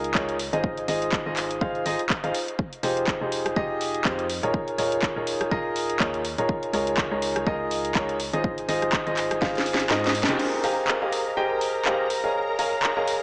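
This short piano house excerpt has an echo-heavy, small-speaker sound, bathed in a wet spring reverb that gives it a soulful, bittersweet air. At 123 BPM in 4/4 with a light swing on the sixteenths, it sits in F minor, moving through chords such as Fm9, Eb9sus4 and Ab6. A clear grand piano plays the riff up front, intimate enough that its action noise is audible, with sidechain pumping and dub echo on its polished tone. Beneath it, a hollow, organ-like FM bass with a fast attack and dark decay carries the low end, tube-saturated and pumping, until 10.4 seconds. An overdriven house kit with a cracking snare, bright hats, handclaps, rim clicks and crash runs throughout, while a punchy electronic kick drops out during a drum fill, and a band accent leads into the second section at 10.4 seconds. There a silky, nasal analog string pad enters with sustained chords, its bright sawtooth voice carrying a soft attack, ensemble chorus and vibrato.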